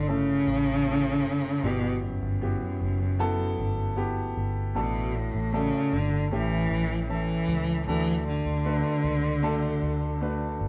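Emotional and heartfelt, this short excerpt from a longer pop ballad moves at a steady 77 BPM in a straight 4/4 feel, set in D major and tuned a touch sharp to A4 = 443 Hz. A single bowed cello carries the melody in its low register, sitting up front with expressive vibrato and portamento that give the line a singing, intimate quality. Beneath it, a warm, natural-sounding grand piano supplies the accompaniment across a broad span of the keyboard, while a vintage electric bass, fingered and foam-muted, adds a dark, round, punchy foundation through its amp. The harmony travels from A through Emadd9 and D/A to A7 before settling on D around 7.9 seconds. The three players sound like a band performing together in one room under light reverb, and the mellow top end lends the whole recording a soft, warm glow.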